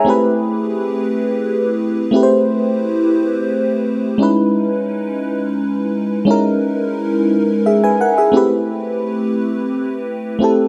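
An FM electric piano layered with a soft pad plays alone in this sultry, late-night R&B excerpt in a straight 6/8 feel, its lush, detuned tone given a dreamy sheen by chorus and phaser and sitting up front in light reverb. Its fast-attack, decaying notes move from Am9 to C#m9 at 4.2 seconds and back to Am9 at 8.3 seconds, keeping the mood mellow throughout.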